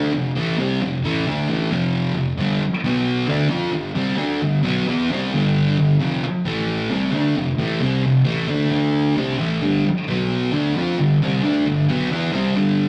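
A thick, double-tracked fuzz guitar plays alone and up front, its picked, distorted power chords moving between F5, G5 and B5 with a swaggering, raw rock strut in a straight 4/4. Near 9.6 s the riff shifts into a new section built on G5, B5 and G after passing through D5 and Am7. The whole short excerpt, cut from a longer piece, sits in a wet stone room with a rough rehearsal-room sound and gritty tube saturation.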